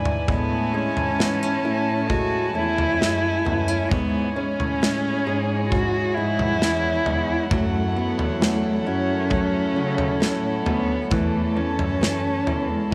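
A hopeful, emotional pop ballad in a straight 4/4 that opens with a drum fill from a punchy acoustic kit, before a woody, bowed solo cello takes the melody up front, its vibrato trailed by tape echo. Beneath it, a mellow baby grand piano and a fingerpicked nylon-string guitar sit in the background, a distant, reedy chamber string section holds gut-string chords, and a sul tasto cello section carries the bass with a soft attack. The harmony moves from Amaj7 through C#m/G# and F#m7 to A/E, set in a light small-room reverb, in this short passage cut from a longer piece.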